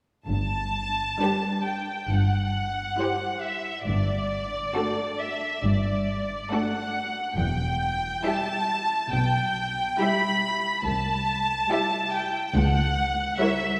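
A lush string orchestra sits in a wet church reverb, giving this excerpt from a slow, romantic classical movement in G major a serene, lyrical glow at 69 BPM, played with rubato in 4/4. From 0.3 s an up-front symphonic violin section carries the smooth, vibrato-rich melody over cellos and an expressive double bass section. From 1.2 s a focused second violin line and an even viola accompaniment join, with the harmony moving from G through Em and C to a C#dim7 near the end.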